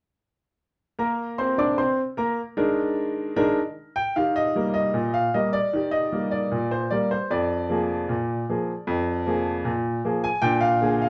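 A straight 2/4 pulse at 76 BPM carries this playful, lively ragtime fragment in Eb major, cut from a longer piece. A lone upright piano plays throughout, from 1.0 to 11.1 seconds, spanning F2 to D6, and its tone is clear, woody and smooth with a vintage character, sitting up front in the mix. The opening phrase moves from Bbadd9 to Bb7/Eb before a new passage begins at 4.1 seconds, settling on Eb and then passing through Bb7/F to Bb7. Around the instrument, a wet club ambience with a short half-second decay is heard from further back in the room, lending the performance a lived-in, intimate setting.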